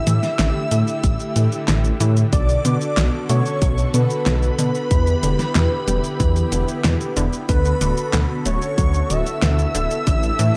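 Uplifting and romantic, this short synthwave clip has a dark, warm production, with a bold sawtooth unison lead carrying the melody through delay while a shimmering vintage string machine plays a high second line through ensemble chorus and tape echo. Beneath them, a smooth, airy supersaw holds sustained chords, a very quiet, warbling unison pluck spins arpeggios, and a thick, saturated detuned saw bass sits up front, with both the bass and supersaw pumping under sidechain. A pop drum kit with a fat snare, handclaps, hi-hat and shaker joins at 0.1 seconds, and a punchy electronic kick enters at 1.0 seconds, all over chords moving from A7sus4 through Bm7 and Em7 to D6 in light digital ambience.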